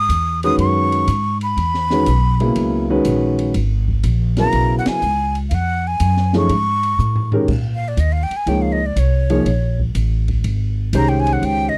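Swinging in 4/4, this intense, searching modal jazz passage, cut from a longer piece, sets a breathy, straight-toned metal flute melody up front over a woody, thumpy pizzicato upright bass on gut strings, warm concert grand piano accompaniment with deep bass, and an acoustic drum kit with a high-tuned snare and boomy kick, the band hitting an accent at 4.8 s before a drum fill at 7.0 s leads into the flute solo at 7.5 s, in a dry, close 1970s-style studio recording.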